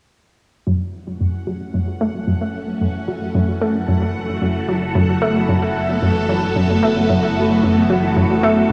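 Hypnotic and expansive, this ambient, sequencer-driven space music excerpt moves at 112 BPM in F# minor over a single F#m7 chord, where a round, nasal analog pluck riff with tape echo and a filter sweep sits up front beside a swirling phased string machine fading in, joined at 1.4 s by a bubbling, resonant stepped-filter texture and at 2.4 s by a warbling analog drone in the background, all soaked in a dreamy cassette-toned reverb.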